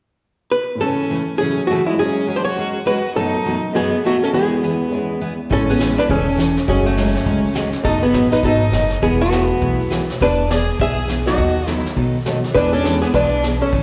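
A dark, clean archtop guitar opens this playful western swing excerpt at 0.5 s, carrying the melody up front with slapback echo at a brisk 204 BPM in A major, joined almost at once by a smooth, lightly vibrato fiddle on the second line, a bright jumbo acoustic guitar and a woody upright piano in the background. At 5.5 s a thumpy, gut-strung upright bass and a vintage brush kit with a punchy kick and rolled-off top enter, driving the swung groove through chords moving from Amaj7 and F#sus2 toward E7. The piano drops out at 7.5 s and returns at 11.3 s, and the whole performance sounds like a live gig heard through a venue's PA in a moderate club reverb.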